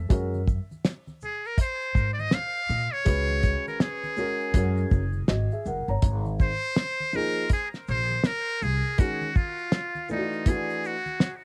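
A metal-muted trumpet stands out up front, buzzy and breathy in a thin, jazz-style voice, entering at 1.2 seconds and taking a solo from 6.0 seconds, its sound colored by cassette tape and analog delay. This relaxed, cool jazz-hop excerpt swings gently in 4/4, carried by a cloth-damped drum kit that is dry and thuddy, with a fat snare, tight kick, hi-hat and shaker, its rolled-off top also bearing the cassette tape character. Pizzicato upright bass sits up front with a woody, dark tone until 8.8 seconds, while a mellow, boxy grand piano supplies taped accompaniment over chords moving from Gbadd9 through Ab69 and Ebm11. Tube shaker and congas, played with soft hands, add a bright, close texture in the background. The whole piece has the light reverb and homespun feel of a cassette home recording, cut from a longer track.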